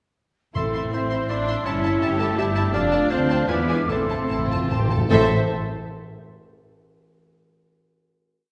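Heard from further back in a reverberant scoring stage, this brief, stormy romantic piece for symphony orchestra in A minor surges in fast 3/4 with rubato, a lush, expressive violin section carrying the melody over a clear clarinet, a mellow cor anglais, pure, distant flutes and a second violin section with repeated notes, while intense violas double the tune, rich cellos add a counter-melody, double basses mark the beats, French horns hold sustained chords in the background, and hard-mallet timpani strike at 0.6 seconds and return with a fill at 3.9 seconds before the final chord at 5.1 seconds.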